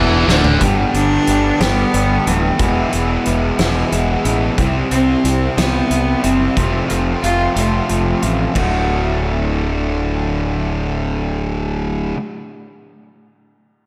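A close, focused bowed cello with vibrato carries the melody of this bittersweet, cathartic quiet-loud alternative rock passage in 6/8, leading a solo section that runs to 8.6 seconds over an up-front, compressed fuzz guitar riff, a growly overdriven fingered bass, a lo-fi phased guitar through a small old amp playing arpeggios from 0.6 seconds, brief opening bursts from a double-tracked thick fuzz guitar and a tight distorted guitar, and a distant, roomy indie drum kit with dark cymbals and a fat snare that kicks off with a fill at 0.3 seconds, the whole mix sitting in a lush hall reverb for a big arena sound.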